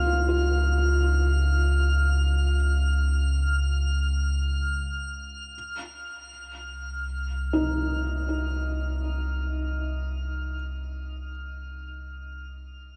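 Reflective and serene, this ambient excerpt pairs a soft, thick-felt upright piano playing intimate arpeggios through delay with a deep, ominous, warbling drone sitting up front and a calm, glassy texture of drifting overtones lifted by chorus, all three fading out over 13.0 seconds as the harmony moves from Db to Cm under a moderate shimmer reverb and a cassette-tape sound.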